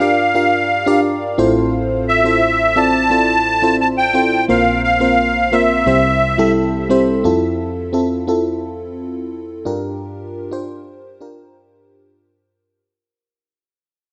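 A straight, unhurried 4/4 pulse at 87 BPM carries this glossy, nostalgic pop fragment in F major, lifted from a longer piece. A musette accordion takes the melody up front from the start, its reedy, shimmering tone sitting high between E5 and A5 and trailed by tape echo until it stops at 6.5 seconds. Beneath it, an FM electric piano layered with a soft pad supplies lush, dreamy accompaniment from A1 to F5, its mellow notes striking quickly and decaying under a chorus effect. The harmony moves through Gm7, Fmaj7/A, Bbsus2 and C before settling on Fmaj7 and Gm7 as the piano continues alone. A moderate plate reverb adds a soft sheen, the top end stays gently rolled off, and a fade-out begins at 7.2 seconds and runs to the close at 12.8 seconds.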